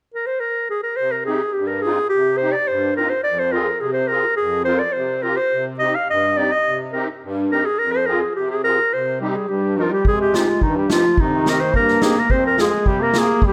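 Set in a moderate recital-hall reverb, this festive yet bittersweet klezmer excerpt in C minor moves at 106 BPM in a straight 2/4, with a clear, classical-style clarinet carrying the melody up front from the start. A reedy, shimmering musette accordion with a vintage, band-limited tone joins at 1.0 seconds to accompany over Cm and Fm harmony. A buzzy, thin trombone with a metal mute adds a close-miked second line at 9.2 seconds, and an airy, polished street-band drum kit with a boomy kick and medium-tuned snare arrives at 10.0 seconds as the section repeats.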